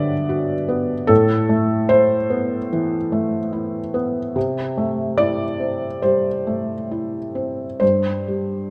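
Rubato phrasing in 4/4 drifts between 64 and 76 BPM, giving this short neoclassical minimalist piano fragment, cut from a longer piece, an unhurried, breathing pulse. A felt-muted upright piano plays solo from 0.0 to 8.7 seconds, ranging from G2 up to E5, and its tone is soft, mellow and up front, with the mechanical action audibly present beneath the notes. The harmony moves from Gmaj7 to Amadd9 at 1.1 seconds, then settles on C6 at 4.4 seconds before the chords fall away near the close. A moderate scoring-stage reverb lends a gentle halo around the muffled hammers. The mood is intimate and peaceful, like a private moment overheard at close range.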